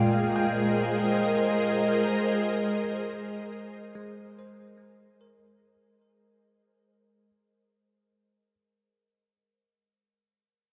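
A luminous, serene ambient passage in free time opens with an ethereal, airy pad holding sustained chords on an Abadd9 harmony, its detuned sawtooth unison softened by a slow attack, ensemble chorus and built-in reverb, sitting up front. Alongside it, a bell-like tine electric piano plays arpeggios in the background, its bright, clean tone colored by phaser and tape echo. The whole fragment fades out from the start, with the pad ending at 5.7 seconds while the electric piano carries on until 8.5 seconds. A huge ambient reverb with a 7.7-second decay bathes the sound in a wet, floating space. Cut from a longer piece, it feels like a suspended moment of glowing calm.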